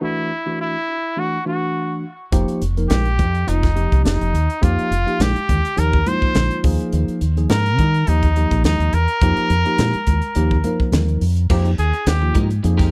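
Electric jazz fusion in F minor at 105 BPM, this nocturnal, intense excerpt from a longer piece moves in 4/4 with a light sixteenth-note swing. A bright, forceful trumpet with a vintage jazz tone carries the melody from the start, its scooped notes and light vibrato riding over a tine electric piano whose clean sound, heard through its built-in speakers, is softened by a lush chorus. At 2.3 seconds the rhythm section arrives: a deep, round dub-style fingered bass sits up front, a crisp acoustic drum kit with a high-tuned snare and punchy kick breathes in a pumping small room, and ringing, medium-tuned congas played with soft hands stay in the background. The harmony drifts through suspended chords, from E9sus4 to F9sus4 and Ebsus24, before settling on Fm11 at 11.5 seconds, where the trumpet moves into a solo and a compressed, picked electric guitar adds quiet stabs coloured by ensemble chorus. 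The mix is dry, with little reverb, and the bass leads the balance.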